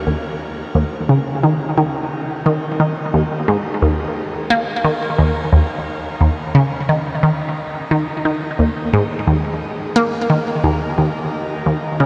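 Cosmic and hypnotic, this ambient excerpt moves at 88 BPM in a straight 4/4, carried entirely by a solo resonant blip pluck from 0.1 s to 12.1 s, ranging from Eb2 to Bb3. The pluck is juicy and squelchy, a detuned sawtooth with a noise layer and ring modulation, its fast attack and short decay giving each note a bright, up-front snap, colored by phaser and tape echo. A shimmering reverb with an 8.1-second tail surrounds it in a dark, warm production.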